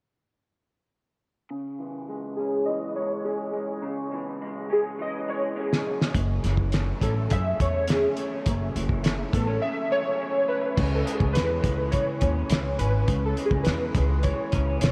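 Indie pop with a bedroom pop haze, this laid-back, nostalgic excerpt moves at 104 BPM in a straight 4/4, circling between C#m and F#m7. A dark, slightly broken-up electric guitar through a small old amp opens at 1.5 seconds with picked accompaniment, colored by analog chorus, vibrato and a low-pass filter, while warbling synth keys carry the melody from 2.4 seconds, their detuned triangle and sawtooth tones softened by ensemble chorus, a filter sweep and a diffuse ambient delay. After a drum fill, a cloth-damped, thuddy kit settles in with a fat snare, tight kick, dark cymbals and a gritty, saturated, muffled character sitting up front. A woody pizzicato upright bass with steel strings joins at 6.1 seconds, also placed close in the mix. At 10.8 seconds the piece shifts into a new section back on C#m, all of it soaked in a huge, dreamy reverb that lingers for seconds.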